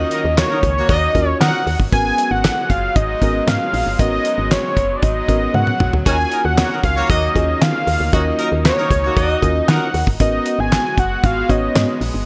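Danceable and slick, this excerpt of early-eighties boogie funk in Eb minor moves at 116 BPM, with a fat, detuned sawtooth analog lead carrying the melody up front over a damped, dry 70s drum kit with handclaps and gated reverb, a round, woody FM bass, a worn, slightly out-of-tune tine electric piano, a reedy studio string section holding chords in the background, and a distant, loose horn section that plays a second line from 0.1 to 1.6 seconds and again from 6.1 to 9.9 seconds, just after a drum fill, all within a bright digital production that alternates between Ebm7 and Abm11.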